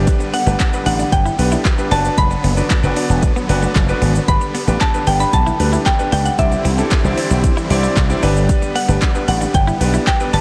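A punchy slap bass with an envelope filter sits up front and pumps against the sidechain, driving this summery, euphoric dance-pop excerpt at 114 BPM in G major, where an overdriven deep house kit of deep kick, metallic hi-hats, handclaps and shaker joins at 0.1 seconds. A clear, intimate concert grand piano with audible action noise and huge, lush supersaw chords in the background also pump with the sidechain through a G, Bm/F#, G, Cadd9, G progression. A compressed clean electric guitar riff enters at 0.2 seconds, and a woody, round FM pluck melody with chorus and dub echo arrives at 0.3 seconds, all inside a blown-out, overdriven mix with light reverb.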